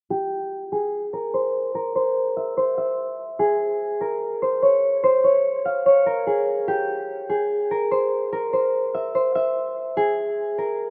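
Over a half-time hip hop feel in 4/4, this menacing, ominous excerpt puts an up-front, ringing, thumb-plucked concert harp melody through a low-pass filter sweep from 0.1 to 10.9 seconds, set in a lush hall reverb within a rough home-demo mix.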